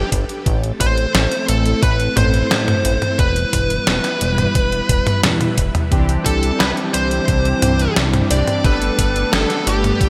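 Nocturnal and driving, this synthwave excerpt moves at 88 BPM in E minor, with a dark, distorted high-gain lead guitar carrying the melody up front through digital delay while a lush string machine holds sustained chords with ensemble chorus and sidechain pumping over the chords Am, Em, Cadd9 and Gadd9. A glossy, nasal chorused synth bass anchors the low end beneath a thumpy electronic kick and a detuned 8-bit drum machine whose hi-hat, snare and toms sit up front in gated reverb, with a drum fill at 5.2 seconds. At 5.9 seconds bold, fat analog synth brass stabs enter with chorus and delay, all set in a moderate plate reverb and a bright 1980s-style digital production.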